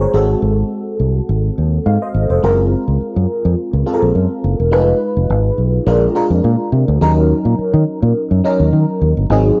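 A growly, punchy fingered electric bass sits up front in this upbeat, urban slice of polished 1980s jazz-funk pop, cut from a longer piece and carried by a light sixteenth-note swing. Beside it, a glassy FM electric piano with a bell-like attack and a noise layer plays the accompaniment, colored by phaser, ensemble chorus, cassette tape and plate reverb. The harmony moves through rich chords such as Ab7b9, Gbmaj9#11 and Fm7b5 before settling on Ebm7, all in a moderate studio room on a home cassette recording.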